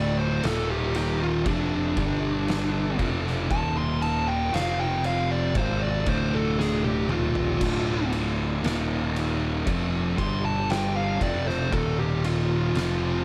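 A slow, straight 4/4 pulse at 58 BPM carries this brooding, hypnotic stoner and doom metal passage in D minor, cut from a longer piece, with an oversized low-tuned drum kit entering at 0.4 s, its punchy kick, fat snare and dark cymbals ringing in a bright stone room and breaking into a fill at 6.6 s. Two distorted fuzz guitars grind out the riff in the background beneath a round, overdriven picked bass, while a very quiet, clean tonewheel organ holds sustained chords through a slow rotary speaker as the harmony moves between Dm, Eb5, G5 and F5. Over it all, a dark fuzz lead guitar plays a solo through tape echo, spanning D4 to C6.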